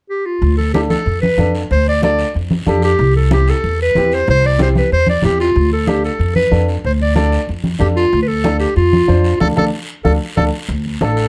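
Cumbia with a driving, danceable feel, led by a bright, classical-style clarinet that carries the melody up front from the very start, over a woody pizzicato upright bass and a mellow, slightly detuned upright piano that moves between Dm and C. Raspy guiro and damped, soft-handed congas fill out the percussion, all set in a dark production with light reverb. The band hits an accent together at 9.4 seconds, near the end of this short cut from a longer piece.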